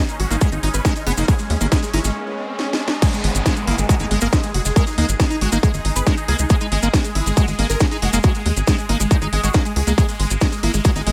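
A thick, detuned supersaw melody with phaser and delay opens this intense, hypnotic psychedelic trance excerpt at 138 BPM, together with a bubbling, bright stepped-filter texture holding chords, a squelchy acid bass riff with dub echo in the background, grainy close maracas, and a tight, dark sequencer bass, with the supersaw, texture and acid bass all pumping to the sidechain. A distorted, overdriven kick sits up front alongside a techno kit with a cracking snare, hi-hat and crash, while a riser builds through a short break and drum fill. At 3.0 seconds the drop lands and carries the driving groove through to the end.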